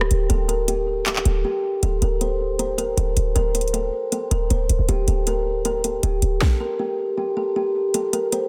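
Eerie and menacing, this half-time trap hip hop excerpt at 157 BPM sets a woody, hollow kalimba melody, softly plucked and ringing through a low-pass filter and tape echo, over a punchy, tight 808-style bass with a fast attack and sine body layered with noise. The electronic trap kit sits up front with a hard-clipped kick, sharp snare, metallic hi-hats, handclaps and rim clicks, and a brief break arrives at 1.4 seconds before the harmony moves from G5/D to D5. The bass drops out at 6.4 seconds and the kick falls silent from 7.9 seconds, all under light reverb and a dense, heavily limited modern master.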